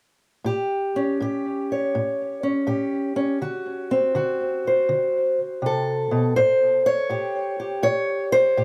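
A fingerpicked acoustic archtop guitar carries this brief solo fragment of acoustic country blues, its dark, boxy tone and the dull bite of old strings sitting up front in the mix. The mood is gritty and swaggering, with a swung eighth-note feel in four that gives the picking a loose, strutting gait. Tape echo trails the guitar, and a light reverb places it in a modest space. The harmony moves from A7 to D7 and back to A7 at 6.4 seconds, where the passage shifts into a new section before it ends at 8.6 seconds. The woody body of the instrument dominates the sound, giving the fragment a rough, lived-in character, and it is cut from a longer piece.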